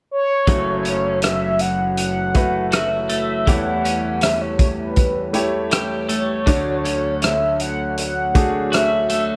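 A straight 4/4 pulse from a loose, gritty indie drum kit with a punchy kick, hi-hat and rim click carries this tender, heartfelt pop ballad, where a round, horn-like synth lead with chorus and vibrato sings the melody from 0.1 s, and from 0.5 s a clear concert grand with deep bass, bright, twangy twelve-string electric guitar arpeggios bathed in lush chorus, and a mellow French horn section holding sustained chords in the background join over F#m7, A7/E and Dmaj7 in a small room with light reverb.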